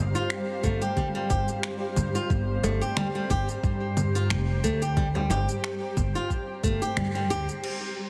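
A cloudy, blurred granular pad, a woody pizzicato upright bass and a faint, glassy texture of drifting overtones open this short organic downtempo fragment together, setting a mystical, hypnotic mood in a swung four-beat groove. The pad holds sustained chords with a slow attack, long release and built-in reverb, its detuned body pulsing under sidechain pumping, while the glass-harmonics layer sits in the background with chorus and its own reverb. A bright, up-front flamenco guitar plays fingerpicked arpeggios with audible finger squeak and tape echo, and the bass carries a touch of tube saturation. An overdriven, layered deep house kit of congas, crash cymbal, finger snaps and shaker joins with a soft, tape-toned electronic kick, both carrying small room ambience, and a vintage, band-limited frame drum adds background percussion between 2.6 and 5.4 seconds. The kick drops out at 7.0 seconds as the band hits an accent, and the whole has a heavily compressed, radio-like sound with light reverb.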